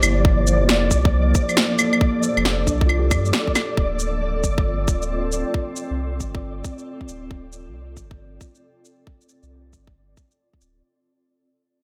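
A dreamy, reverb-soaked mix with a moderate plate sheen opens this nocturnal, ghostly future garage fragment, cut from a longer piece and fading out across its full 10.8 seconds. At 136 BPM in 4/4 with a 64% swing on the sixteenths, a layered electronic shaker, claves and a cracking snare play from the start, and an overdriven electronic kick with a tight punch sits up front from 0.2 seconds, sharing the same grit and studio reverb. A deep, round sub bass anchors the D minor harmony, breathing with sidechain pumping beneath a cloudy, evolving granular pad that holds sustained chords, moving from Gm7 to Dm7 at 3.8 seconds. Muted, felt-like synth keys sound softly in the background with chorus and a diffuse ambient delay, playing only until 3.8 seconds. Above it all, a grainy, flickering texture hovers on a single high D, adding a spectral shimmer to the haze.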